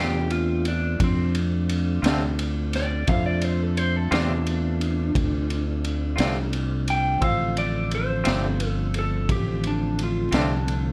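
A slightly broken-up electric guitar through a small old amp takes a picked, lo-fi solo with subtle chorus and plate reverb over a brooding, soulful slow blues in 12/8 at 58 BPM, resting on a Dm7 chord in D minor, where a clean semi-hollow guitar adds tremolo-washed accompaniment, a woody upright piano and a soft, flute-like tonewheel organ turning through a slow rotary speaker sit in the background, a round, punchy fingered bass stays up front, and a gritty, saturated breakbeat kit with a high-tuned snare, tight kick and dark ride cymbal comes in at 0.3 seconds in this cut from a longer piece.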